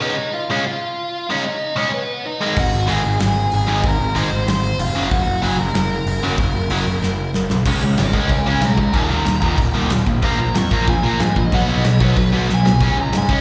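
A biting lead guitar, warm-toned and overdriven with slapback echo and delay, carries the melody and breaks into a solo at 7.7 seconds in this urgent, angry punk rock excerpt. Beneath it, a double-tracked overdriven rhythm guitar sits up front with a bright, picked riff and its own slapback echo. At 2.6 seconds a growly fuzz bass and a big acoustic drum kit arrive together, the kit airy and polished with punchy kick, medium-tuned snare, hi-hat and bright crash cymbals. The opening passage rides a half-time feel that ends on a drum fill before the solo drives ahead in a straight 4/4, with another short fill at 12.5 seconds. The whole thing sounds like a live gig heard through the venue's PA, with light recital-hall reverb and a dull, rolled-off top end.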